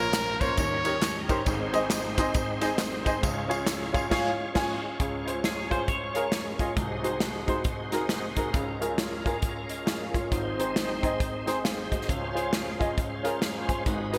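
A brilliant, punchy trumpet with scooped notes opens this uplifting, hopeful uptempo gospel excerpt over a worn concert grand piano with deep bass and a shouting, lightly overdriven tonewheel organ with fast rotary speaker. A polished acoustic drum kit with a punchy kick, gated reverb and close, dry handclaps and tambourine drive the swung groove, and a band accent arrives at 4.1 seconds. A twangy, clean electric guitar adds a brief second line at 5.5 seconds, all within a lush hall and bright 1980s-style digital sheen.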